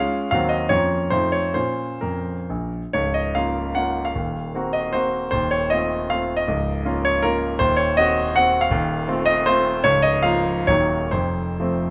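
A solo concert grand piano opens this short fragment of a romantic classical dance in triple time, its dotted rhythms giving the music a capricious, nostalgic lilt. The tempo breathes freely with rubato, pushing ahead and holding back as the phrase unfolds. The piano sounds brilliant and polished, sitting up front with a present, detailed character, while its range reaches down into a deep bass and its notes carry a short sustain. After a brief opening phrase, a longer second section begins at 2.9 seconds, circling through minor chords, diminished colours and dominant sevenths before closing on a major chord at 11.1 seconds. Close microphones capture the instrument in a light reverb, and the fragment ends abruptly, cut from a longer piece.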